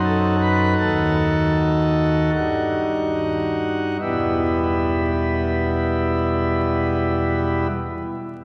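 Dark and solemn, this brief excerpt from a classical chorale-style piece in E minor unfolds at a slow, rubato 35-41 BPM in 4/4, with a solo pipe organ playing a full, romantically voiced principal chorus up front from E1 to B4, slowing down over the opening 4.0 seconds on a B7 chord before settling onto E minor, and falling silent at 7.7 seconds, all set in a cavernous church reverb with a vinyl crackle.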